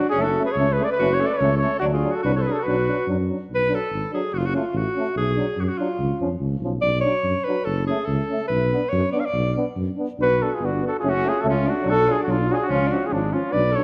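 The alto saxophone stands out, its vibrato-laden, smooth-topped classical tone carrying a restless, virtuosic solo from 3.5 to 10.2 seconds, while the flugelhorn rests before returning with the melody at 10.2 seconds. This Balkan folk piece, cut from a longer work, moves at 144 BPM in a swung 2/4 in B Dorian with a raised fourth, over chords of F#m, D, Bm and C#. A dark tuba bass sits up front with the smooth-toned flugelhorn, and two warm euphoniums hold the background accompaniment, one more distant and roomy, all within a moderate recital-hall reverb.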